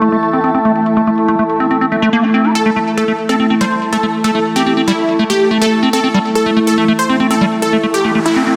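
Over a straight four-four pulse, this driving, intense psychedelic trance fragment rides a squelchy, resonant acid bass riff with a filter sweep, chorus and delay up front, a very quiet, overdriven electronic hi-hat, a morphing, warbling wavetable pad and a blurred granular cloud pad, before a punchy, detuned supersaw stab with phaser enters at 2.6 seconds and a noise sweep arrives at 7.9 seconds, set in a lush hall reverb under a dense, heavily limited master.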